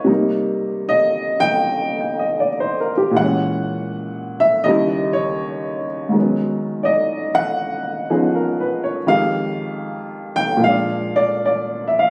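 Solo jazz piece in 4/4 at 79 BPM with a relaxed, swinging rubato feel, taken from a longer performance and lasting 12.1 seconds. A lone upright piano, woody and boxy with short sustain, sits up front and spans Eb2 to G5 as it moves through Cm7, Bbm7b5, Eb7b9, Abm7, Fm9 and Bb7. The phone-captured sound places it in a compressed club room with a moderate echo-chamber reverb trailing each phrase.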